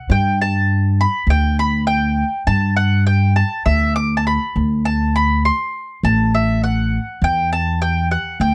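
A round, picked mandolin with double strings carries the melody up front in this uplifting, hopeful excerpt of indie folk with a building arrangement, set at 101 BPM in straight 4/4 and G major with tuning at A4 = 443 Hz, joined at 0.1 seconds by a woody, dark pizzicato upright bass, as the chords move through Gsus2, D5 and Emadd9 in a dry, close 1970s-style studio sound.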